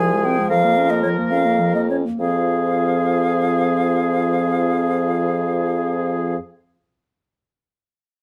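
This fragment of a quick classical-period movement for wind quintet opens at 0.0 seconds with all five players sounding together in F minor, in a restless, urgent 6/8 at roughly 65-80 beats per minute counted in dotted quarters, played with rubato and tuned to A4 = 436 Hz. An airy silver concert flute carries the melody up front, tongued and sung with vibrato, while a warm, softly attacked oboe traces a second line from a more distant, roomy place. A mellow clarinet with a smooth top and a clear French horn with light vibrato fill in the accompaniment, and a vintage-toned bassoon with light vibrato anchors the bass. The opening passage slows as it settles over a B-flat minor harmony with F in the bass, and at 2.2 seconds a new passage begins on F minor. A moderate studio reverb gives the ensemble a modest sense of space until the fragment ends at 6.4 seconds.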